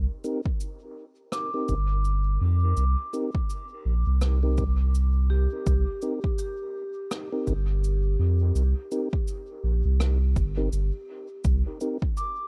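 A round, sine-like sub bass opens this meditative, hazy ambient dub passage at 0.0 seconds, sitting up front with a fast attack, long sustain and a touch of tube saturation as it moves between G1 and F2. Soft, flute-like tonewheel organ stabs arrive almost at once, spun through a fast rotary speaker and trailed by dub echo. Entering at the same moment is a natural-sounding cabasa and rim click played with brushes, also echoed. An overdriven, layered electronic kick drum lands up front at 0.5 seconds, and at 1.3 seconds an airy vibraphone with medium mallets and its motor off begins ringing arpeggios from G4 to D6, softened by a low-pass filter and dub echo. At a relaxed 83 BPM in 4/4, with a gentle swing on the sixteenths, the passage rests on a single C minor seventh chord in a dark, reverb-washed production, cut from a longer piece.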